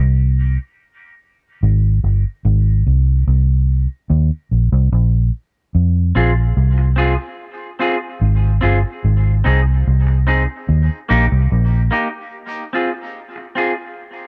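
A round, foam-muted vintage electric bass opens this hypnotic, meditative dub reggae excerpt alone and up front over a slow Fm–Ab–Eb cycle, until a bright, twangy clean electric guitar carrying dub echo enters at 6.2 seconds and rings on after the bass stops at 11.9 seconds, all within a dark, ambient digital space.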